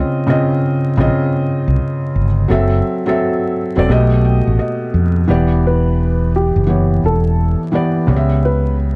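Lo-fi hip hop in E dorian at 86 BPM with a 16th-note swing, this nostalgic, hazy excerpt opens on a felt-muted upright piano with audible action noise, softened by cassette tape and plate reverb, joined at 1.0 s by a round, up-front fretless electric bass, with the piano playing a fill from 3.9 s before a woody, slightly detuned second upright piano carries a short plate-reverbed melody from 5.7 s, all under dark production and vinyl crackle.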